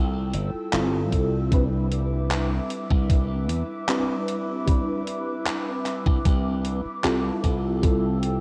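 Vaporwave at a dreamy, woozy 76 BPM in C major, this short clip of a longer piece drifts from Fmaj9 to Cmaj9 as a round, dark FM electric piano with ensemble chorus and tape echo sits up front over a detuned, nostalgic sawtooth-and-triangle pad that warbles with chorus, phaser and its own reverb, while a bright, punchy glassy slap bass holds the low end, gated 80s drum-machine handclaps and hi-hat arrive at 0.3 seconds, and a thumpy electronic kick lands up front from 1.1 seconds, all wrapped in a dry cassette tape sound.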